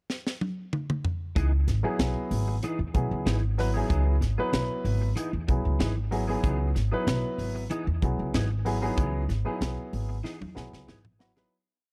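Funky and intense, this short electric jazz fusion piece moves at 95 BPM in a straight 4/4, sitting in C# minor over a single C#m9 chord once the groove lands at 1.4 seconds. A tight funk drum kit opens alone with a fill across the pickup bar, its high-tuned snare and tight kick sounding dry and polished, then settles into a funk groove before a second fill from 10.2 seconds. The upright bass enters up front with a woody, thumpy pizzicato tone from steel strings, driving a syncopated riff in its low register. A dark, mellow baby grand piano joins at 1.8 seconds with syncopated chord stabs in quartal voicings and long sustain, while a clean electric guitar, present since 1.4 seconds, adds twangy, compressed funk strumming in upper chord shapes, colored by ensemble chorus and tape echo and sitting lower in the mix. The small room ambience gives the whole a dark production, and the piece fades out from 9.0 seconds to its close.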